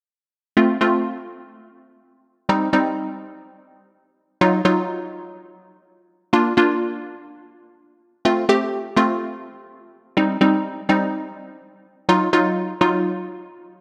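A crisp, detuned wavetable chord stab plays alone from 0.6 to 13.6 seconds, its bright, decaying filter pluck sitting up front and colored by a phaser. This summery, carefree pop excerpt moves at 125 BPM in a straight 4/4, cycling through F, Cm, Ebmadd9 and Bb before the progression returns at 8.3 seconds. A moderate, lush hall reverb with a 2.2-second tail surrounds the digital stabs.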